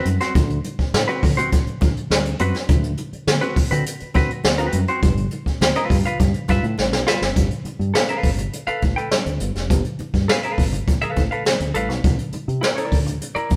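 Strutting and funky, this 103 BPM funk groove sets a bright, clean, compressed semi-hollow electric guitar over a dark, round, punchy fingered bass, a roomy brushed drum kit with a high-tuned snare and boomy kick, and very quiet soft-handed congas, all heard live in a moderate stone room as the chords move from D6 to G13, then a drum fill at 6.8 seconds leads into a new section on G9 and C9.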